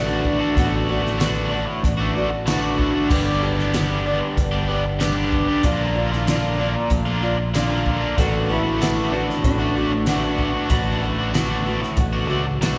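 A steady, straight 4/4 pulse at 94 BPM drives this jangly, warm excerpt of folk rock and heartland rock in D major, carried by a loose indie drum kit with a fat snare, punchy kick and dark cymbals that enters at 0.2 s, a round, dark picked electric bass, and a very quiet, jingly tambourine arriving at 1.2 s. A shimmering, octave-doubled twelve-string acoustic guitar picks the accompaniment through chords moving from D6/A to G and Bbmaj7, while a biting, double-tracked overdriven guitar sits up front with a riff pulsing through harmonic tremolo. At 8.2 s a slightly broken-up, compressed electric slide guitar adds a brief second line, all of it washed in a church reverb.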